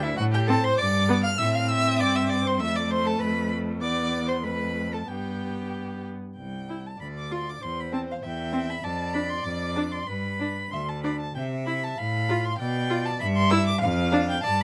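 A quick, cheerful classical-period string quartet movement in C major, played with lively rubato in 2/4 at 92-100 BPM, sets an up-front first violin singing a warm, expressive high melody with vibrato and portamento over a smooth, distant second violin, a focused, clear viola entering at 0.5 seconds, and an intense, rich cello bass, all captured by close, detailed microphones in a dry room.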